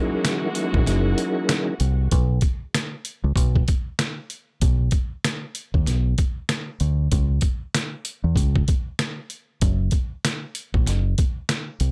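A round, dark fingered electric bass sits up front from 0.7 seconds in this tough, gritty boom-bap hip-hop cut at 96 BPM with a swung 16th feel, over a compressed, pitched-down sampler-style drum kit with a thumpy kick and medium-tuned snare, while a soft, flute-like tonewheel organ with fast rotary shimmer and a lush bowed string section hold an F#13 chord until the organ drops out at 1.7 seconds and the strings at 2.1 seconds, leaving the dry, saturated groove to move toward Bm.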